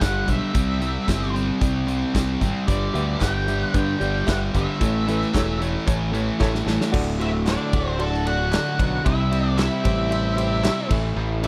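A dark, fuzzed-out lead guitar carries the melody from the first moment, its octave-fuzz tone thickened by distortion and a slapback echo, over a swaggering, driving classic rock groove at 113 BPM in D mixolydian. Two overdriven guitars, one biting and one with a hollow-body character, play riffs beneath it, anchored by a bright, punchy fingered bass sitting up front and a huge arena drum kit with a punchy kick, medium-tuned snare, hi-hat, ride and crash. A worn, woody upright piano, slightly detuned with audible action noise, joins in the background at 2.7 seconds, and a hollow, band-limited group handclap follows soon after. After a drum fill, the second section opens at 6.9 seconds on a D chord, where a very quiet, lush string machine adds sustained, slow-attack chords and a second fuzz guitar line slips in behind the lead. A short piano fill near the close rounds out this dry, close 1970s-style studio sound, which is cut from a longer piece.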